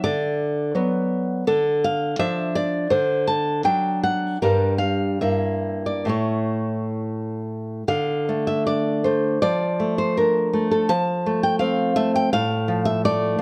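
The rhythm breathes freely in a rubato 2/4, with the pulse drifting between 65 and 87 BPM. This romantic piece for solo classical guitar sits in D minor, tuned to A4 = 442 Hz, and carries a nostalgic yet sunny mood. The fingerpicked nylon-string guitar is up front throughout, ranging from G2 to A5 with a warm acoustic tone. Its opening passage moves from Bm/D and Dm through D and Gm to A, and at 7.9 s a second passage turns toward F before the music breaks off at 13.4 s, since it is cut from a longer piece. Close, detailed microphones capture the instrument with light reverb.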